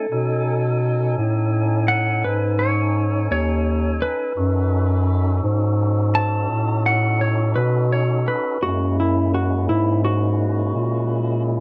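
Rolling in a slow 12/8 with a straight feel, this gritty, swaggering blues fragment sits on a breathy, dark bass clarinet carrying the bass line up front with vibrato and a smooth top in a jazz style. A clean, compressed lap steel plays a twangy, fingered slide line as a second line, while a fat tonewheel organ holds sustained chords with key click and a slow rotary speaker. The harmony rests on B13 before shifting to F#9 at 8.6 seconds, all set in light reverb and a dark, warm production.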